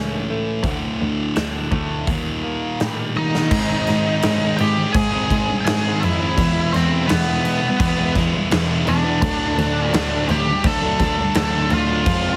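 A straight 4/4 pulse at 84 BPM drives this bittersweet, restless quiet-loud alternative rock excerpt, tuned to A4 = 444 Hz, where a twangy guitar's phaser-and-tape-echo arpeggios open alongside a bright fuzz riff and a boxy bowed cello bass with vibrato and portamento, the big-room arena kit with punchy kick joins at 0.6 seconds, a drum fill at 3.2 seconds ushers in a dark, up-front octave-fuzz lead melody and a second fuzz riff tucked in the background, and chords move from A and D5 through Eb, Ab and E to D under light reverb, small room ambience and a heavily compressed radio sound.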